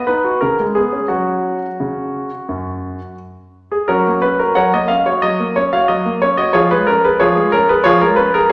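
A clear concert grand piano opens this brief, playful classical-period sonatina in F# major, touching C#5 at 0.4 seconds and F#5 at 1.1 seconds. The solo line moves in 4/4 at about 85-93 BPM with a cheerful, rubato feel, and a phrase heard twice settles on an F# chord at 3.9 seconds and a C#/E# chord at 6.5 seconds. The up-front, intimate piano has deep bass, long sustain and audible action noise, set in a wet recital hall reverb of 1.5 seconds.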